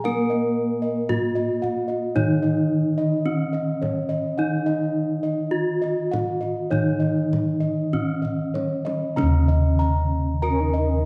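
Up front and close, a bright bronze metallophone struck with a horn mallet carries the melody, its paired tuning giving each ringing note a shimmering beat. Beneath it, a second metallophone, played with padded disc mallets, adds a mellow, soft accompaniment an octave lower, while one set of bossed gongs spins high arpeggios with a round, mid-forward tone and another anchors the bass with full, pulsing bronze. This cut from a longer piece of Javanese gamelan has a serene, ceremonial mood, moving at an unhurried pace in a straight four. A tight, vintage-sounding kendang keeps time and plays a fill from 7.9 to 9.2 seconds, just as the music moves into a new section. At 10.5 seconds a low bamboo xiao enters with a second line, warm and airy, with vibrato and a crisp attack. The ensemble sits in a reverberant recital hall whose sound is softened at the top.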